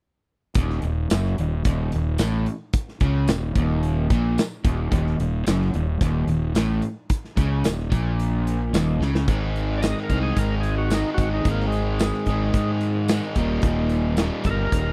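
Classic rock at 110 BPM with a driving, swaggering feel, this dry, close 1970s-style excerpt pairs a big-room acoustic drum kit (punchy kick, hi-hat, snare and tambourine) and a crunchy, double-tracked picked guitar riff over a dark, round fuzz bass on an Eb5 chord, until a drum fill at 9.0 seconds leads into a section on Ab and then Eb where a thick, gritty overdriven tonewheel organ enters at 9.8 seconds with a solo through slow rotary speaker and slapback echo.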